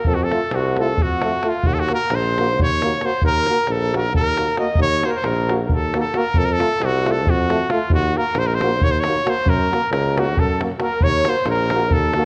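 Heard through worn, warbling old cassette tape with a warbly pitch drift and a moderate scoring-stage reverb, this fiery, virtuosic Balkan brass band excerpt is cut from a longer piece and moves at 269 BPM in a straight 7/8, centred on Eb dorian with a raised fourth. A clear trumpet, up front and in a classical style, carries the melody for the whole passage. A very quiet flugelhorn with vibrato adds a second line until 4.8 seconds, then returns at 10.2 seconds. Beneath them, a tuba with light vibrato sits distant and roomy on the bass, while a tight, close davul drives the percussion. A distant, soft-attacked euphonium and a close-miked, clear trombone supply background accompaniment as the harmony moves between F, Ebm and Gb across two statements of the same section.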